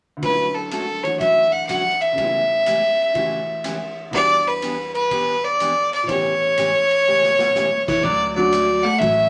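A swung 4/4 groove at 123 BPM drives this cheerful western swing clip in D major, cut from a longer piece. Up front, a single bowed fiddle carries the melody with a biting, intense tone and light vibrato, backed by a bright picked dreadnought acoustic guitar and a boxy upright piano with short sustain. A big-band drum kit sits in the background with a punchy kick, medium-tuned snare, hi-hat, ride and crash, and plays a fill at 7.1 seconds. The harmony moves from Dmaj7 through A9/C#, Em7 and A7 before returning to Dmaj7 as a new section opens at 8.0 seconds. Just before, at 7.9 seconds, a dark, clean hollow-body electric guitar slips in with a second line, and a growly, thumpy pizzicato upright bass joins it as the section begins. The whole performance sits in a wet studio ambience.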